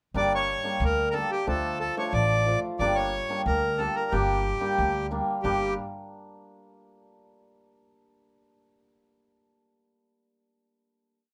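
A whole short klezmer piece opens with hammered dulcimer and pizzicato upright bass together at 0.1 s, and the accordion joins almost at once. The mood is bittersweet yet festive, in a straight 2/4 that moves from G minor to D minor and back. The reedy, full accordion carries an ornamented modal melody up front, with dry tuning. Alongside it the hammered dulcimer, also up front, plays shimmering, ringing syncopated chords in triad voicing, while the bass gives a woody, thumpy quarter-note figure on gut strings. After a single run through the main section, the piece settles on a final chord from 5.4 s, heard in a moderate small room.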